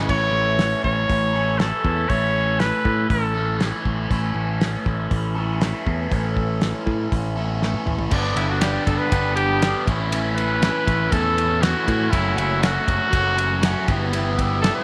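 A steady, straight 4/4 pulse at 120 BPM comes from a cloth-damped, thuddy drum kit with a fat snare, tight kick and dark cymbals, joined by a punchy picked electric bass and a bright overdriven electric guitar riff through a phaser, giving this wistful, jangly indie rock in A major its drive. A clear, up-front trumpet with light vibrato and scooped notes carries a vintage pop-style melody over light reverb. After a drum fill at 7.6 s, the music moves to G and then on through A, F#m and Em/G, as the trumpet takes a solo and a crunchy overdriven guitar, bathed in lush chorus, returns in the background from 8.1 s.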